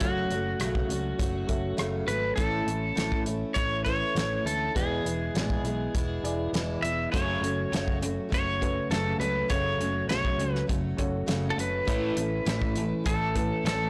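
A clean, fingerpicked pedal steel guitar sits up front carrying the melody with slide and volume swells, leading a hopeful, jangly folk rock and heartland rock excerpt in A major at 101 BPM, moving through F#m, A and E. Beneath it, a full-bodied jumbo acoustic guitar with finger squeak, a round, amped fingered bass with transformer saturation, a very quiet, woody upright piano with audible action noise, and a dry 70s drum kit with a fat snare and tight kick keep a straight 4/4, while a bright, double-tracked overdriven electric guitar riff enters in the background at 7.1 seconds. The whole recording sounds blown-out and overdriven, set in a moderate studio reverb.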